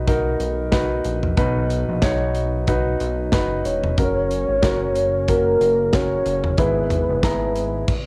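A warm baby grand piano and a glossy, retro chorused synth bass open this uplifting, anthemic piano-driven pop passage in B major at 92 BPM with a light sixteenth-note swing, soon joined by a punchy, polished acoustic drum kit with an airy, small-room sound and crash, hi-hat, snare and toms, both piano and drums carrying a cassette-tape tint, while a soft, round, dark octave-layered synth lead with chorus and vibrato enters at 3.7 s over chords moving from B to F# to E.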